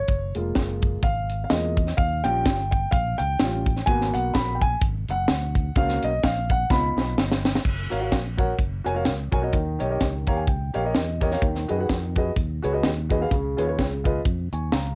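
Uptempo gospel in F# major at 127 BPM with a swung feel, this soulful, hopeful excerpt from a longer piece features an intimate grand piano with audible action noise soloing up front for the first 7.6 seconds over a growly fingered electric bass and a crisp, airy fusion drum kit with a high-tuned snare and tight kick, whose fill leads into a second passage where the piano adds a fill at 10.0 seconds, all through light reverb on a home cassette recording, moving through chords such as F#maj7, D#7, G#m7 and C#7.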